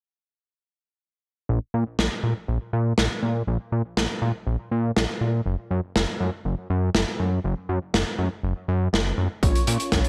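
Italo disco in a straight 4/4 feel, this short cut from a longer piece carries a nostalgic, bittersweet mood. A fat analog bass enters at 1.5 seconds, thick and up front with a detuned sawtooth tone and a filter sweep, sustaining its notes over an open, chordless stretch. Half a second later a crunchy breakbeat kit joins on hi-hat and snare, gritty and saturated with a rolled-off top and a gated reverb around its medium-tuned snare. Near the close, at 9.4 seconds, the harmony settles on B-flat minor as mellow synth brass stabs arrive, round and dark with chorus, phaser and vibrato colouring their evolving tone. A punchy electronic kick drum, overdriven and layered, enters at the same moment, while a small room ambience surrounds the whole mix.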